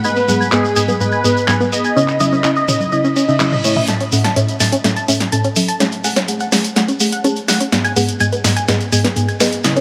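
Progressive house at 125 BPM in 4/4, this dreamy, emotional passage is cut from a longer piece and moves through G#m, C#madd9, A and F#madd9 before returning to G#m. A smooth, evolving supersaw carries the melody with delay until 3.8 seconds, over a tight, driving sequenced synth playing arpeggios treated with chorus, phaser and delay. Deep, full-bodied chord stabs with chorus and delay sit up front, while a grainy acoustic shekere adds detail throughout and a very quiet, glassy harmonics texture with drifting overtones colours the opening. The deep house drum kit enters at 0.2 seconds with a punchy, overdriven snare, handclaps and hi-hat, joined by overdriven electronic congas and toms in the background until 3.9 seconds. A faint reverse cymbal leads into a build-up with a drum fill from 3.9 seconds, all washed in a huge ambient reverb.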